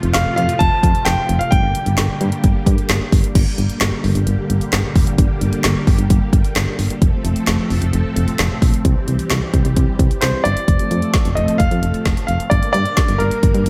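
A deep house drum kit sits up front in this driving, melancholic synth-pop passage, its deep kick, woody snare, dark hats, handclaps and crash cymbal given a layered, produced sheen and a gated reverb. Beneath it, a solid FM bass plays punchy, round notes with a fast attack that decays into a mellow tail, running the whole length of the clip. A string machine set to cellos holds sustained sawtooth chords with a sub octave and soft attack, colored by phaser and ensemble chorus for a full, vintage glow. A clear concert grand piano carries the melody with an intimate, polished tone, audible action noise and long sustain, treated with delay; it plays from 0.1 to 3.1 seconds and returns at 10.2 seconds to close the passage. The harmony moves through F, G minor and C in a straight 4/4 pulse, and the dry mix keeps every part close, as befits a section cut from a longer piece.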